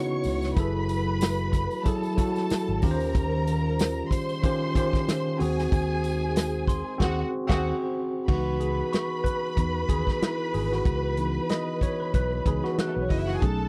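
Bittersweet and smooth, this lush 1970s-style soul excerpt in swung 4/4 rides on a tight, roomy drum kit and a round, amped fingered electric bass, with a worn, slightly out-of-tune tine electric piano accompanying up front through light overdrive while a bowed string section carries an expressive, vibrato-rich second line, a very quiet dark French horn section holds sustained chords until 8.3 s, a jingly tambourine and a ringing, bell-like glockenspiel sit in the background, and after a band accent the electric piano takes a solo from 8.3 s to the end.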